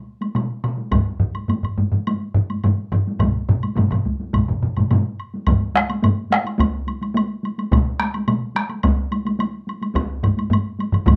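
A rough home demo sound in a wet small room frames this short cut from a longer Japanese traditional taiko drum piece, powerful and driving at 106 BPM in straight 4/4, speeding up throughout. Several up-front taiko ensemble layers struck with heavy and hard sticks stack together: one band-limited and vintage, another compressed and saturated, another carrying a live-room air. A solo taiko drums part plays until 8.7 seconds, a close, dry, woody woodblock sits lower in the mix, and one ensemble layer drops out at 6.5 seconds before returning at 10.2 seconds.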